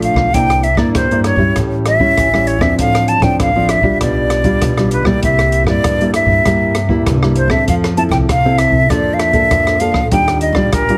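A straight 4/4 samba-and-choro groove, festive and lively, rides on an open jazz drum kit of dark, smooth hi-hat, rim click and a boomy kick, while woody pizzicato upright bass and up-front, thumb-plucked nylon-string guitar move through chords from C9 to Ebmaj9 beneath an airy, expressive silver concert flute melody with vibrato and lifted highs, the whole mix set in light reverb and a heavily compressed radio sound across this 11-second fragment of a longer piece.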